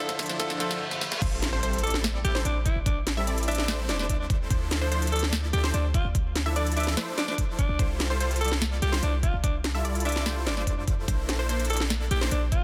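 A dense, heavily limited modern master with light reverb frames this euphoric, playful future bass cut from a longer piece, moving in a half-time feel. It opens on a short build-up where a trap drum kit fills beneath an electronic riser and reverse cymbal, while a barky tine electric piano, clean through a combo amp and treated with phaser and delay, plays briefly until 1.0 s. The drop lands at 1.2 s with an impact and an overdriven, knocking electronic kick drum set up front, joining a deep, boomy 808-style bass that has sounded since the opening, warmed by tube saturation and riding sidechain pumping. Huge, lush supersaw chords carry the riff with a moving notch and a bright sustain, as a detuned unison pluck with 12-bit sampler grit ripples arpeggios in the background. Over the top, a raspy solo alto saxophone leads the melody in a pop style, punchy with vibrato and scooped notes and trailed by delay, while the kit's sharp snare and crisp hats add overdriven bite. 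The harmony moves from Am7 through Dm9 and Fmaj9/C to a closing Bbmaj9#11.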